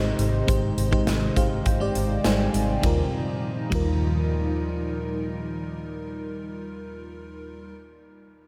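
A straight 4/4 pulse drives this romantic, glossy slice of 1980s-style pop, lifted from a longer piece. A big acoustic rock kit sits up front with a punchy kick, a medium-tuned snare, hi-hat and bright ride cymbal, playing until 3.9 seconds. Underneath, a vintage fingered electric bass gives a dark, round, foam-muted tone with an amped punch. A lush, detuned FM electric piano, layered with a soft pad and treated with chorus, carries the accompaniment with fast-attack, decaying notes and adds a fill in the opening bars, while a glassy, ethereal FM pad holds slow-blooming chords through ensemble chorus and its own reverb. The harmony moves from Abmaj7 to Ebadd9 at 2.8 seconds, and a cathedral-sized reverb soaks the whole mix in a dreamy haze.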